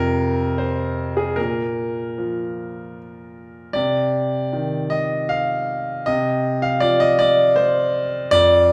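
This neoclassical minimalist piano fragment, cut from a longer piece, sets an intimate, melancholic mood in C minor at 78 BPM in 3/4, played with a rubato feel. A solo concert grand piano carries the whole 8.7 seconds, spanning F2 to F5, with a clear, smooth tone, a deep bass and a vintage character. The piano sits up front, so its touch feels close and personal. A single F5 opens the phrase, a Bb5 follows at 1.4 s, and a Cmadd9 chord arrives at 3.8 s. A wet, large studio reverb with a 1.5-second decay surrounds the instrument, giving the sense of a live performance in one room.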